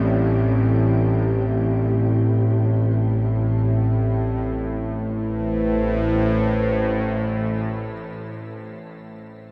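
Dark ambient drone in free time and A minor, this ominous fragment of a longer piece sets a tense, string-like bowed drone up front in the low register beneath a deep, moody analog pad with chorus and shimmer reverb, while a very quiet, crystalline glass pad glints until 4.6 seconds, all suspended in a vast, echoing space as the harmony shifts from C over A to A minor at 4.5 seconds.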